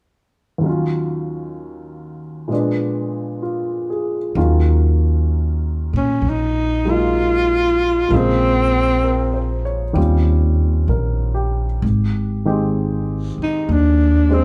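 Jazz ballad with an intimate, melancholic swing, cut from a longer piece, in which a warm upright piano opens alone at 0.6 seconds, a woody, growly pizzicato upright bass joins at 4.4 seconds, and a breathy, close-miked alto saxophone with vibrato and subtone takes the solo melody from 6.0 seconds, all three up front in a moderate large-studio reverb.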